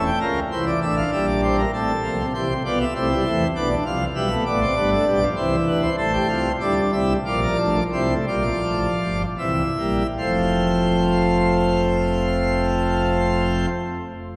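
A cathedral reverb with a long four-second tail surrounds this recording, made in a church or concert hall. A solo pipe organ on full plenum, rich with mixtures and set up front, plays a baroque-style four-part fugue in F major in 3/4 with a straight feel. Its brilliant, romantically voiced registration spans from a deep F1 at the bottom to G5 at the top, giving the elegant, joyful counterpoint a grand weight. The tempo moves between 72 and 99 BPM, and the music slows from 5.1 to 10.2 seconds as diminished and dominant-seventh harmonies, including a suspended C7, lead to a cadence on F at 10.2 seconds. The organ sounds until 13.7 seconds in this short passage cut from a longer piece.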